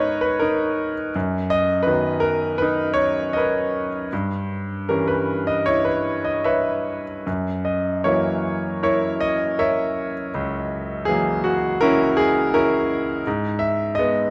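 Flowing in a rubato 4/4 at roughly 73-84 BPM, this peaceful, tender classical passage, cut from a longer piece, features a solo grand piano tuned to A4 = 438 Hz. The piano sounds brilliant and intimate, placed up front with audible action noise, moving from G#m through Bmaj7/F#, Em6/G and F#7 before settling back on G#m at 13.3 s. A moderate concert-hall reverb and a dark overall production frame its lyrical playing across the C#2 to E5 range.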